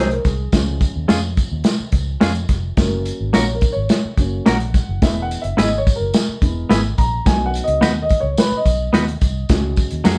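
Joyful and danceable, this short cut from a longer uptempo 1960s-style soul track moves in a straight four-four feel with a band playing live together in one room. A dark, woody upright piano takes the lead with a solo across the whole 10.2 seconds, its boxy, mellow tone carrying the harmony through changes from G# and C# to F#, E and B before landing on a C#sus4. Beneath it, a vintage muted electric bass played with the fingers gives a round, foam-muted low end, while a clean, compressed semi-hollow electric guitar sits up front with short stabs of hollow-body color. The soul drum kit, also up front, brings a tight kick, a medium-tuned snare and hi-hat with a smooth, rolled-off top, and a jingly tambourine enters at 0.2 seconds, sounding distant as if from a large room. Moderate studio ambience with a half-second decay surrounds the whole performance.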